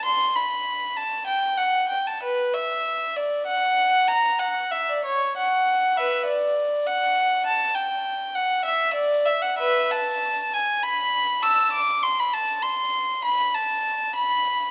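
Heard up front in a moderate recital-hall reverb, this grave, introspective fragment of a baroque-style suite movement for a single bowed violin moves in a rubato 12/8 at 66 beats per minute, its nasal, gut-string period tone and airy bow ranging from B4 to E6 as the music turns from E minor to A minor at 9.6 seconds.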